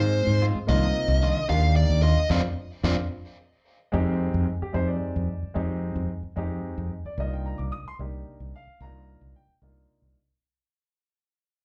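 Jazz in a driving, slick 6/8 at 74 BPM in F dorian, captured live through a club PA, where an up-front, dark overdriven lead guitar with slapback echo and a bright, twangy, picked electric guitar with subtle chorus play only until 2.9 seconds over a natural baby grand piano and a round, direct fretless bass, with a band accent from 2.3 seconds before the cut from a longer piece fades out from 3.9 seconds.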